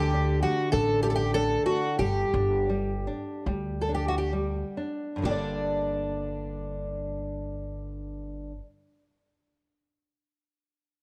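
A shimmering, octave-doubled fingerpicked twelve-string guitar carries a longing melody up front over a deep classical nylon-string guitar and a woody, growly pizzicato upright bass in this mournful, rubato fado-style ballad, the opening slowing until the melody stops at 4.3 seconds and a bright, picked jumbo twelve-string enters at 5.3 seconds with a softer second line, framed by light reverb and small-room ambience.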